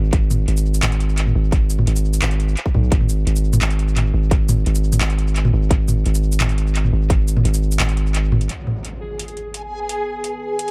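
Heavy and dark, this half-time drum and bass excerpt at 172 BPM in G# minor drives a deep, sine-toned 808-style bass and a tight, layered electronic kick under an up-front kit of handclaps, metallic hats, shaker and toms soaked in tape echo, until the kick drops out at 8.2 seconds, an electronic impact lands at 8.5 seconds on a G#madd9 chord, and a reversed, granular swelling texture and a moody detuned pad with sidechain pumping close out the final moments.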